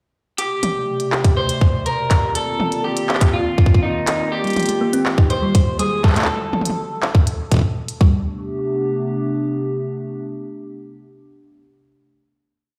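Glitchy and cerebral, this short IDM piece runs at 122 BPM in 4/4 with a straight feel in A minor, moving through minor eleventh chords from Am11 to Cm11, Fm11 and Em11 before landing back on Am11. An up-front, tight electronic kick drives a broken pattern, while a glitched drum kit of clicky closed hi-hats, high toms and handclaps shifts its beat constantly, both tape-warm and re-recorded in a large room. A warbling, nostalgic pad built from square and triangle waves holds dark, slow-attack chords with chorus and its own reverb, lingering to 11.2 s after the rest of the band. An electric guitar through a small old amp plays a bright, twangy, slightly broken-up motif of call phrases, bathed in spring reverb and dub echo. From 4.4 s, a gentle, round, tine-like FM pluck with a noise layer adds a mellow 11-step arpeggio loop that drifts against the bar, coloured by chorus and dub echo. The groove gives way to a final hit at 8.3 s, the whole mix sounding as if played on a big sound system in a bare stone room.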